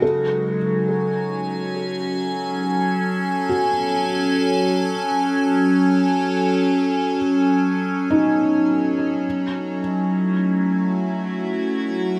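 An evolving wavetable pad sits up front, its bright, morphing chords swelling in slowly through a phaser and its own reverb while a felt-muted upright piano plays mellow, intimate arpeggios in the middle register beneath it, colored by a diffuse ambient delay. This peaceful, luminous ambient passage moves at an unhurried 52 BPM in 4/4, resting on F#m before shifting to a rootless Dmaj7 at 9.3 seconds. The whole fragment, taken from a longer piece, is bathed in a huge, wet reverb that gives it a spacious, floating sound.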